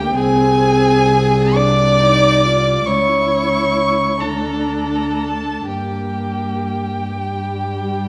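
In a freely pushed and pulled 12/8, this slow, elegiac fragment of a romantic string quartet movement unfolds with solemn gravity, its harmony moving from Ab/C through C#m and D5 to Gm. A rich, smooth first violin sings the melody up front with steady vibrato, joined by a dark-toned second violin on its own line, while the viola's expressive portamento fills the accompaniment and a woody cello anchors the bass. All four bowed voices bloom in the reverberant glow of a recital hall.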